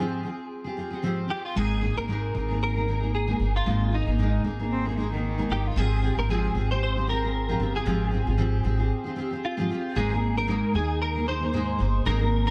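This acoustic pop excerpt has a sunny, easy-going mood and a gently swung feel in four. A fingerpicked steel-string acoustic guitar, double-tracked and up front, lays down a full-bodied accompaniment with audible finger squeak. A clean, compressed electric guitar, recorded direct and treated with ensemble chorus, carries the picked melody. A pizzicato upright bass on gut strings joins at 1.6 seconds, woody and thumpy in the foreground. A single cello adds a brief, nasal and earthy second line from 4.7 to 5.7 seconds, bowed with an airy tone and light vibrato, and a short break arrives before the closing section, all set in a small room.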